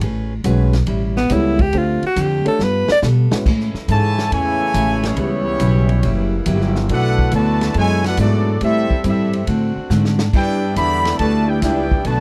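Brassy and energetic, this big band swing excerpt opens with a clear, close-miked alto saxophone playing a short solo with vibrato and scooped notes from 1.2 to 3.0 seconds. Beneath it play a piano with deep bass, a bright picked steel-string acoustic guitar in the background, a woody gut-string upright bass up front, and a vintage drum kit with dark cymbals and a punchy kick that plays a fill from 2.6 seconds. At 3.5 seconds a mellow, soft-attack saxophone section enters holding sustained chords in the background. At 3.9 seconds a tight, bright trumpet section takes the melody up front, backed by a roomy, distant trombone section on a second line. The recording has a dry, close 1970s-style studio sound with little reverb.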